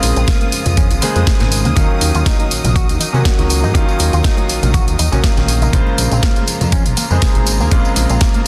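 A sleek, groovy nu-disco passage in Bb minor opens at once with a clear baby grand piano, its action noise audible and its long sustain trailed by digital delay, alongside smooth, bowed symphonic strings holding sustained chords with light vibrato under sidechain pumping. A fat, detuned sawtooth bass with a saturated filter pluck and fast attack pumps beneath them, joined by an electronic, layered house kit with a cracking snare, hi-hat and tambourine, plus very quiet cabasa, bongos and congas played with hard hands. At 0.2 seconds a clean, picked electric guitar riff through an envelope filter enters in the background, dressed in subtle chorus and delay, and at 0.3 seconds a gritty, thumpy, compressed electronic kick lands up front. The tempo sits at 121 BPM in 4/4 with a light swing on the sixteenths, as the harmony moves from Bbm7 to Ebm7 and back to Bbm7. Light small-room reverb surrounds a dense, heavily limited modern master, and this cut from a longer piece runs about 8.5 seconds.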